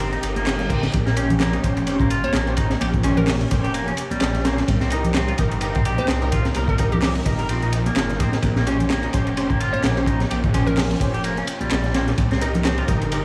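Breakbeat with a raw, swaggering attitude, this clip from a longer piece rides a swung groove over chords moving between Cm7 and Bbm69. Up front, a crunchy breakbeat kit lays down a tight kick, high-tuned snare and dark cymbals, its saturated, gritty tone rolled off at the top. Beside it sits a thick, swirling detuned saw bass treated with phaser. Further back, an overdriven house kit adds bright hats and handclaps through analog delay, while very quiet, close and dry congas ring with hard hands. A twangy clean electric guitar riff, picked and given overdrive, 12-bit sampler grit and delay, runs until 12.8 s, against a bowed string section whose vibrato-laden chords pump under sidechain and carry sampler grit. A bold orchestra-hit-like synth stab arrives at 0.7 s during a brief reverse cymbal, and from 2.2 s a hollow, bouncy square pluck melody with chorus and an old-record tint floats through an echo-heavy mix set in a small room.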